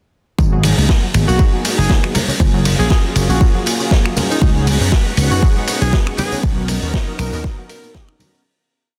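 At 0.4 s this groovy, feel-good nu-disco piece opens at 119 BPM with a punchy, tape-toned electronic kick on four-on-the-floor, a vintage drum kit with dark cymbals and a disco backbeat of snare, snaps, tambourine, ride and open hat, quiet ringing congas, and a bright, up-front slap bass playing a syncopated riff. Mellow, brassy synth brass holds rootless chords with syncopated pushes, and a round analog pluck runs a 16-step arpeggio, both with chorus and sidechain pumping over a G#m9, F#maj7, C#7sus4, Bmaj9 progression. A distant, roomy tenor saxophone adds short phrases with dub echo from 1.3 s, and a lush string machine pad swells in the background from 4.4 s as the dense, heavily limited mix fades out from 5.8 s.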